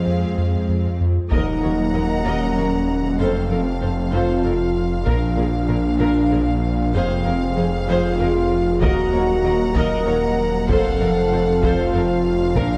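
Tense and relentless, this cinematic hybrid orchestral and electronic film score excerpt moves at 64 BPM in 6/8 in Eb dorian, opening with a brief rich symphonic violin note over lush viola, a chorused dark analog pad, clear background cellos and a round, ring-modulated analog bass. At 1.3 seconds an intense studio violin section, mellow French horns, a thick, menacing, saturated detuned saw bass up front and close, dry background taiko drums join in beneath moderate scoring stage reverb, cycling through Ebm, F, Bb and Fm in a dark, warm production.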